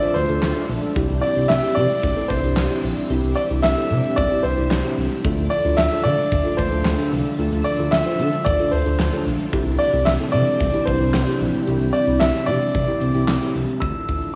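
A straight 4/4 pulse at 112 BPM drives this nocturnal synth-pop passage, cut from a longer piece, with a huge arena drum kit laying down handclaps, hi-hat, a punchy kick and a fat snare in a hall-like space. Beneath it, a smooth gliding synth bass with portamento enters at 0.2 seconds, its dark sawtooth and square-wave tone sitting in the low register. A clear concert grand piano carries the melody up front, polished and present with long sustain and audible action noise, treated with cassette tape colouring and tape echo. Muted felt-like synth keys supply soft, decaying accompaniment thickened by chorus and a filter sweep, while a string machine ensemble holds lush, mellow sustained chords in the background with slow attack and ensemble chorus. The harmony sways between Dmadd9 and Cadd9 throughout, and moderate spring reverb plus the character of a home cassette recording give the whole passage a homespun feel.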